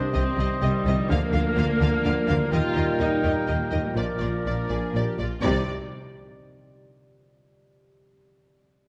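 This excerpt from a longer cinematic cue opens with most of the orchestra sounding at once, the violins, cellos and double basses joining a split second later, in a swashbuckling, determined passage in C minor at 125 BPM in a straight 3/4. The violin section carries the melody with a lush, vibrato-rich tone, supported by a very quiet second violin line, while a distant oboe and a very quiet, mellow clarinet add woodwind second lines. Violas fill in the accompaniment, and cellos and an up-front double bass section anchor the bass with smooth, even bowing. French horns and trombones hold soft sustained chords, clear trumpets punctuate with stabs from the background, and a ringing, thumb-plucked concert harp plays arpeggios. The harmony moves from Cmadd9 through Bb/D, Eb and Bb before returning to Cmadd9 at 5.4 seconds, and the harp rings on alone after the other parts stop around 5.7 seconds. 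A moderate scoring-stage reverb gives the dark production a spacious, roomy finish.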